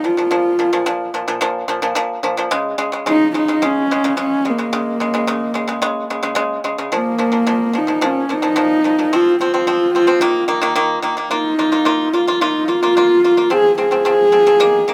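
Windswept and solemn, this short cut from a longer Mongolian folk piece sets a dark, husky horsehead fiddle melody, bowed with light vibrato, soft attacks, portamento and a slapback echo, over dry, percussive pipa arpeggios played with fingerpicks, both parts up front in an open-air sound with little reverb, moving into a new section at 6.9 seconds.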